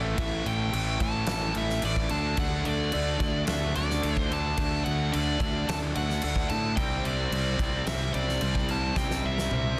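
A growly, fuzz-laden fingered bass sits up front in this driving, heavy hard rock excerpt at 109 BPM, anchoring the low end under A5, D and C chords alongside three picked guitars riffing together: a biting overdriven one with spring reverb, a very quiet bright distorted one, and a tight double-tracked one in the background. From 0.2 seconds a nasal lead guitar with a parked wah carries the high melody through overdrive and digital delay, while a huge arena drum kit, with its fat snare and punchy kick, pounds up front. The drums close with a fill at 9.0 seconds, all set in a small room and a dense, heavily limited modern master.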